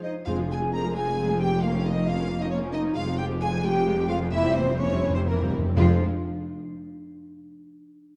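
A quick, urgent F minor orchestral passage in 3/4 at 120-136 BPM opens with a clear violin section carrying the melody over a mellow, hollow flute line, soft-attack French horn chords and a distant cello bass, joined at 0.3 seconds by a very quiet, lush second violin line, a smooth viola accompaniment in the background, a close, focused double bass and round, up-front timpani that return for a fill from 4.3 seconds, all set in a dark scoring-stage reverb as the restless harmony moves from Fm through Bbm/F and C7/F back to Fm.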